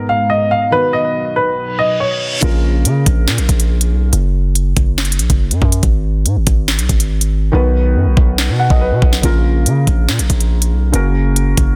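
A dark, mellow grand piano melody with tape echo opens over a soft, felt-muted upright piano and a moody, detuned analog pad with chorus, before a reverse cymbal at 1.8 seconds leads into an ominous, cold half-time drill groove at 141 BPM in Bb phrygian, where a heavy, distorted 808-style bass and an up-front electronic drum kit of knocking kick, sharp snare, handclaps and crisp hi-hats drive a dense, dry mix, the hi-hats briefly muted from 7.5 seconds as the upright piano returns over chords moving from B to Bbm to Gb.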